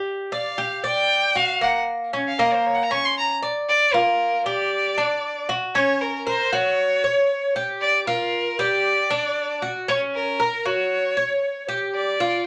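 A rich, bowed violin leads this sultry Latin excerpt, entering at 0.3 seconds with a smooth, even line sung with vibrato by a single player placed up front. It carries a solo through the opening 3.7 seconds, then continues the melody into a longer second section that runs to the close. Beneath it, an acoustic Cuban tres picks arpeggios on its double strings, some of them octave-doubled, giving a warm, metallic shimmer. The tres is also up front, sitting just under the violin, and plays from the first moment until 12.5 seconds. A moderate club reverb lends the pair a club room sound, and the straight four-beat feel keeps the mood warm.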